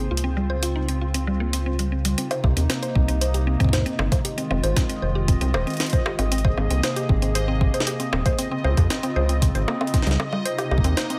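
IDM with an intricate, glitchy mood, where a dark, flute-like pad sustains chords and a woody mallet-like pluck runs arpeggios through tape echo, while a rubbery, nasal square bass sits up front and a bubbling stepped-filter texture hovers high above, with a gritty, pitched-up jungle sampler kit of bongos, hi-hat and snare joining at 0.2 seconds and a deep, tape-warm electronic kick arriving at 2.4 seconds, all in light reverb.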